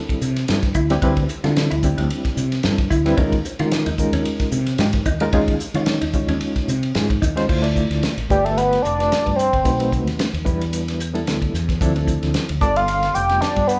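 A damped, up-front 70s drum kit with a fat snare and dark cymbals drives this slick, intense jazz fusion excerpt at 111 BPM with a light sixteenth-note swing, as a round fretless bass and a reedy electric piano with fast tremolo carry the suspended chords, a mellow compressed electric guitar adds stabs until 7.4 seconds, and at 8.3 seconds a hollow, nasal synth lead layered with a fifth and a sub octave enters up front with chorus and vibrato.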